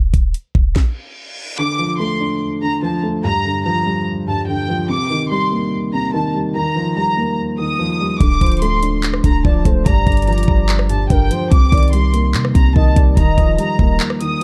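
Trap-flavored hip hop at 145 BPM in a half-time feel and D phrygian, melancholic and dark, opening with a brief burst of knocking trap drums and a deep, boomy 808-style bass that drop out at 0.8 seconds for a reverse cymbal before a gut-string violin section with light vibrato and delay takes the melody over a boxy, mellow concert grand piano cycling Dm, Gm7, Cm7 and Ebadd9. At 8.2 seconds the up-front kit of sharp snare, metallic hats, claps and rim clicks returns with the clean sine bass, soon joined by a detuned, gliding sawtooth lead with chorus and delay as a quieter second line. The production is dark and close, with little reverb, and the passage is cut from a longer piece.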